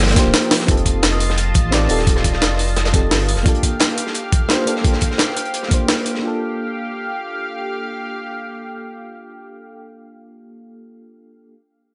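A dark, softly reverberant haze sets the tone for this short, melancholic and dreamy liquid drum and bass passage in G minor at 173 BPM, cut from a longer piece. A mellow FM electric piano, round and warbling with a vintage tape character, chorus, tremolo and delay, carries the accompaniment across the whole 11.5 seconds, with a filter sweep running over it from 0.7 to 6.2 seconds. Beneath it, a lush, detuned unison pad holds bright sustained chords that pump against the beat, while a deep, thick saturated sub bass sits up front until 3.4 seconds. Three drum layers drive the groove until about 6 seconds: a thumpy electronic kick, a pitched-up, overdriven jungle-style kit with hi-hats and snare re-recorded in a large room, and a smooth, rolled-off breakbeat kit tucked in the background, with a drum fill at 0.5 seconds. The harmony moves from Gm7 to F7 and back to Gm7 at 3.3 seconds, and once the drums fall away the keys and pad drift on alone.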